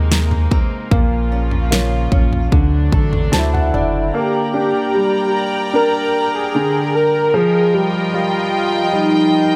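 Pop ballad at 75 BPM, hopeful and tender, opening with a natural-toned grand piano and reedy bowed strings over a full-bodied fingerpicked acoustic guitar in the background, a round sine sub bass and a punchy, up-front electronic drum kit with fat snare and toms, before the drums stop at 3.9 seconds, a piano fill leads to a chord change at 4.1 seconds, and a velvety, detuned synth lead with chorus and vibrato carries the melody over piano and strings to the end of this cut from a longer piece.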